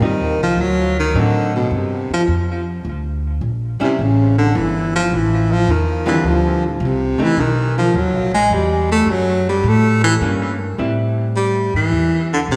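Cool, swinging small-group jazz in the swing-and-bop vein at 106 BPM, cut from a longer piece, where a breathy, close-miked baritone saxophone with subtone, vibrato, scooped notes and tape echo takes an up-front solo through 10.8 seconds over a dark, clean hollow-body archtop guitar and a woody, thumpy pizzicato upright bass, all bathed in a dreamy plate reverb.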